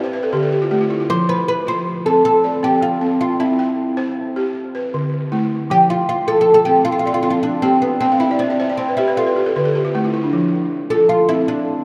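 A buzzing, woody balafon opens with a fill and carries hypnotic arpeggios while a plectrum-plucked, fretless oud with double strings sings a flowing melody, both up front in this West African traditional excerpt in 12/8, set in a vast cathedral-like space, before the balafon fills again from 8.0 seconds and the oud takes a short solo at 10.3 seconds.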